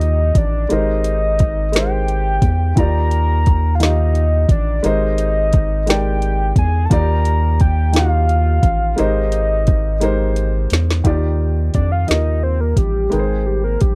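A soft, octave-layered synth lead carries the melody over a dark, mellow baby grand piano, a round analog bass and a smooth R&B drum kit with a soft kick, woody snare and metallic hats, all easing through a slow, sensual six-eight groove at 58 BPM in Eb major. The chords sway between Ebmaj9 and Abmaj9, the piano's action noise adding intimacy while the deep bass and the drums sit up front in a dry, close 1970s-style studio sound. A drum fill at 10.0 seconds leads into a solo from the chorused, vibrato-tinged synth lead at 11.0 seconds, and this cut from a longer piece closes at 13.9 seconds.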